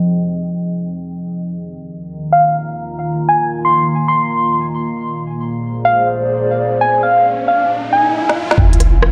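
Swung 16ths at 136 BPM frame this nocturnal, wistful future garage excerpt, where a warbling, lo-fi pad with sampler grit and sidechain pumping sustains dark chords over Fm7, Ebsus2 and Bb7 beneath a gentle, keys-like FM lead with vibrato and tape echo entering at 2.3 s, while a riser from 6.6 s builds into a sub drop and a drum fill on an organic electronic kit with a woody snare, crisp hats and rim clicks, landing at 8.6 s with a muffled, thumpy kick and a deep, round 808-style bass, all under a lush hall reverb and low-pass filter sweep.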